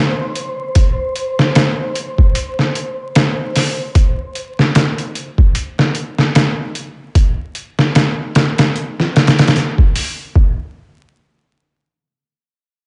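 Crackling vinyl surface noise and a dull, rolled-off top end give this short trip hop excerpt a dusty, hypnotic and cinematic air, with little reverb in the overall sound. A breathy, wind-like tuned noise texture opens the piece, its slow attack and long release carrying a soft sine tone through its own built-in reverb until it ends at 4.0 seconds. The sampler-style drum kit comes in at 0.4 seconds and sits up front, its hi-hat, thumpy kick and medium-tuned snare sounding compressed, pitched down and gritty, as if re-recorded in a large room. A lazy swing on the sixteenths gives the groove a loose, head-nodding sway. The drums stop at 10.5 seconds, shortly after the music moves into a new section at 10.3 seconds.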